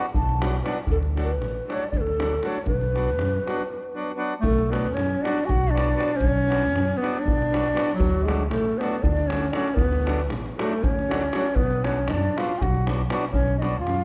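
A breathy, mellow ney opens the music with the melody over accordion, davul and upright bass, as a Balkan wedding band plays folk music in 7/8 at 236 BPM in eighths, with a straight feel, in B minor. The mood is bittersweet and virtuosic, the ney's hollow, end-blown tone carrying vibrato and soft attacks with rolled-off highs, while the reedy accordion offers full accompaniment in dry tuning. The bass is woody and up front, and the deep davul sounds distant, as if in a large room. After a break from 3.7 to 4.4 seconds, a clarinet joins as a second line in classical style, and the harmony moves between B minor and D. The production is dark, set in a moderate recital hall reverb, and the passage is cut from a longer piece.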